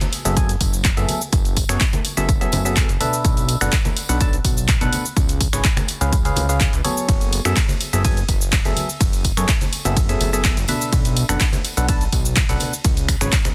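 A punchy electronic kick drives this 125 BPM piano house excerpt in straight 4/4, with an overdriven analog drum machine adding hi-hat, ride, handclaps, finger snaps and cabasa, while tambourine and congas ring in the background from a small room. A fat, detuned sawtooth bass with tube saturation pumps against the kick, and a hollow, wave-folded organ stab with chorus, phaser and digital delay carries the riff over chords moving from F#m11 to Bm7 and C#7. The mood is energetic yet bittersweet, set in digital ambience with a dense, heavily limited master, and a barely audible impact marks the opening 1.3 seconds.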